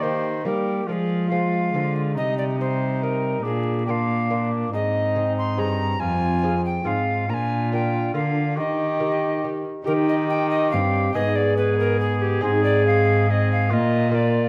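An airy, chiffy alto recorder carries the melody up front with crisp attacks and vibrato in this courtly, stately renaissance-style consort dance in 3/4 at 140 BPM in Eb major, joined by a mellow, distant cor anglais on the second line, a delicate fingerpicked lute with double gut strings, a smooth-topped trombone in the background and a rich, reedy bowed cello on the bass, heard in a moderate recital hall reverb over vinyl crackle.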